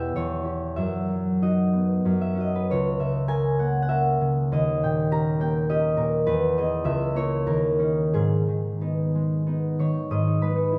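A bright, ringing concert harp, thumb-plucked and placed up front, opens this dreamy, graceful classical solo in G# minor, moving in a rubato 3/4 at 87-105 BPM across a span from C#2 to D#6. Its chords drift from E minor through B/F# and D#7 before settling on G# minor at 8.1 seconds, closing a short passage cut from a longer piece. A wet stone room reverb lends the harp a lingering halo.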